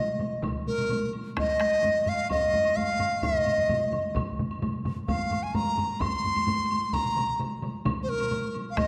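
Powerful and ceremonial, this short cut from a longer Japanese traditional taiko drum ensemble piece moves at 129 BPM in a straight 4/4, with a hollow bamboo dizi carrying the melody up front between Bb4 and C6 in a pure, warm, straight, tongued tone, with a buzzing membrane and lifted highs. Beneath it, four taiko ensemble parts enter within the opening moments, the last at 1.4 seconds: one struck with heavy sticks sounds distant in a large room, another with hard sticks is close and dry, and two more with hard sticks sit in a small room. A woody woodblock, also distant in a large room, sounds quietly behind them, and a wet concert hall reverb gives the whole performance a ceremonial sense of space.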